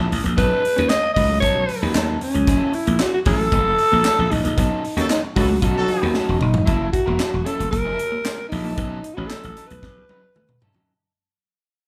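A raspy, breathy alto saxophone carries the melody up front through this playful, gritty funk clip at 114 BPM, moving between B9 and F#7#9 over a growly, punchy slap bass and a tight kit with a high-tuned snare, handclaps and toms. A slightly broken-up picked guitar supplies accompaniment and a dark, clean fingered guitar riff sits in the background, while a distant horn section with light vibrato adds a second line from 5.0 to 6.1 seconds during a band accent. The ensemble plays live in one large studio room with moderate reverb, and the cut, taken from a longer piece, fades out from 6.7 seconds.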